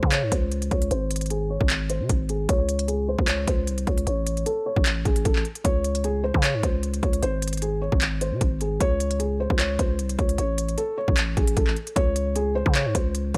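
This menacing, eerie trap excerpt opens with a felt-muted upright piano, a growling 808-style bass and an electronic trap drum kit sounding together from 0.0 seconds, moving at 152 BPM in 4/4 with a half-time feel. The piano carries the melody between G#4 and C#5, its thick felt giving a dark, intimate tone with audible action noise, and a low-pass filter sweep shapes it through the first 5.6 seconds. Underneath, the harmony cycles through C#5, G#, a rootless G#add11 and A, then repeats. The buzzy, sine-based 808 has a fast attack and decaying notes, sitting up front alongside the hard-clipped kick, crisp hi-hats and handclaps. The dry mix carries little reverb, and a brief new section arrives at 12.0 seconds before the cut at 13.4 seconds.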